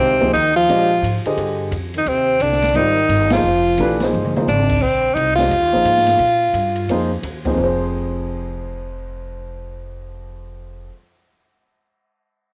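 A brisk swing at 174 BPM in 4/4 drives this cool, searching modal jazz fragment, cut from a longer piece. An edgy, punchy tenor saxophone leads up front with forceful, scooped notes, while a mellow trombone with light vibrato plays a second line in the background until it drops out at 4.0 seconds. Both horns and the up-front grand piano carry a cassette-tape tint, and the piano's warm accompaniment spans from low to high register over a Bb13sus4 harmony that shifts to Fm at 7.6 seconds. A woody pizzicato upright bass anchors the low end, and an open, natural drum kit with dark cymbals, a medium-tuned snare and a boomy kick sits low in the mix. The band hits an accent at 3.3 seconds and a brief drum fill follows, and the saxophone finishes before the bass and piano ring out. Light small-room reverb and a homespun cassette recording give the whole a close, intimate grain.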